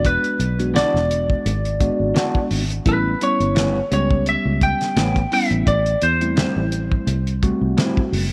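A straight-eighth groove at 85 BPM with a light sixteenth-note swing drives this rollicking, swaggering soul blues clip, where cloth-damped, thuddy drums with a fat snare and tight kick sit up front beside a round, foam-muted fingered bass, a dark, slightly broken-up lead guitar carries the melody, a bright, bell-like tine electric piano with phaser supplies chords moving from E9 to A9 to Am7, and a compressed guitar through a small old amp adds stabs from 0.7 seconds, all set in a snug room with light reverb.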